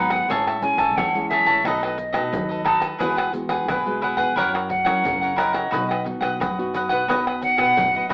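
Sunny and festive, this short excerpt of samba and choro moves at 88 BPM in a straight 4/4, with a hollow, airy jazz flute carrying the melody up front, its tongued notes shaded with vibrato and a cassette-tape grain. Beside it, a bright, crisp cavaquinho picks the accompaniment close to the listener, while a dark, fingerpicked nylon-string guitar adds classical-style support further back. A woody pizzicato upright bass with steel strings sits low underneath, and a percussion group of egg shaker, pandeiro, tamborim and deep surdo, played with soft hands in a small room, comes in at 0.1 seconds. The harmony passes through Amaj7, B7, Eadd9 and F#7 before arriving on B. The whole piece has a homespun, AM-radio character, bathed in a wet spring reverb and small-room ambience.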